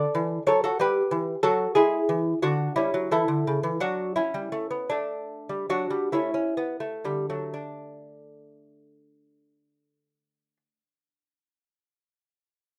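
Flowing and dance-like, this short excerpt from a baroque-style classical dance in D major moves in a rubato 6/8 at roughly 40-63 BPM, easing into a slowdown between 1.7 and 7.5 seconds. A solo lute sits up front, fingerpicked and delicate, its gut double strings with some octave doubling giving a warm, plucked shimmer as it plays until 11.1 seconds. The rough home-demo mix places it in a wet studio reverb, and the harmony passes through E7 and A7 before settling on D5 at 7.5 seconds.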